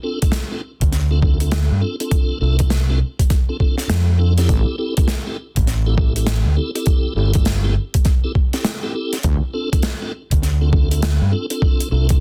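A gritty, thumpy, pitched-down kick anchors this swaggering, funky glitch hop excerpt with swung sixteenths, joined by a punchy, amped fingered electric bass with tube saturation, a gated 80s kit of hi-hat and medium-tuned snare in a bright stone room, brief heavy sawtooth wobble-bass bursts at 4.5 and 9.2 seconds, and a quieter, piping tonewheel organ playing stabs through a slow rotary speaker, 12-bit sampler grit, sidechain pumping and tape echo, set in a dense, dry, heavily limited mix.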